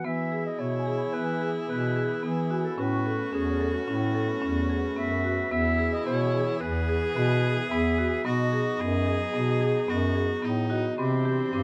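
From the first beat, a soft-attacked, up-front bass clarinet anchors this hopeful, shimmering contemporary chamber piece in 5/4 at 110 BPM in E major, with a mellow, distant clarinet carrying the melody, a clear, biting viola with vibrato adding a second line, band-limited, vintage-toned marimba arpeggios struck with medium hard mallets, and a dark, muted string section holding veiled chords in the background, while a bell-like celesta adds delicate texture from 0.6 to 3.3 seconds and again from 10.7 seconds, all set in a light reverb as the chords move from E through Aadd9 and B to a closing Cadd9.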